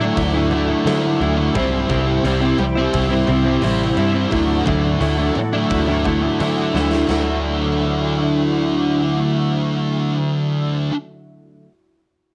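A thick, up-front fuzz guitar riff with ensemble chorus opens this wistful, dreamy shoegaze and dream pop excerpt. Alongside it play a clean, compressed, direct-recorded electric guitar riff with reverse reverb, shimmering octave-doubled twelve-string acoustic arpeggios in lush chorus and analog delay, a dark, round foam-muted bass, and very quiet, mellow string-machine cellos sustaining chords over Dadd9 and C. From 0.2 s a big-room acoustic kit with a boomy kick sits in the background, with a fill at 6.8 s before it stops at 7.3 s, and cassette-tape color tints the guitars and drums of this lightly reverberant home recording.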